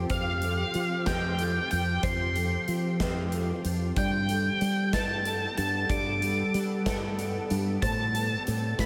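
A shimmering, ethereal pad, clean picked electric guitar arpeggios, soft felt-muted piano arpeggios in the background and a growly, bright fingered bass open this cinematic, melancholic post-rock excerpt in 6/8 at 62 BPM, joined at 0.1 s by a dark, fuzz-distorted lead guitar melody up front and a big rock drum kit with a punchy kick, all moving through Fsus2, Gadd9 and Amadd9 in a dreamy mix soaked in huge ambient reverb.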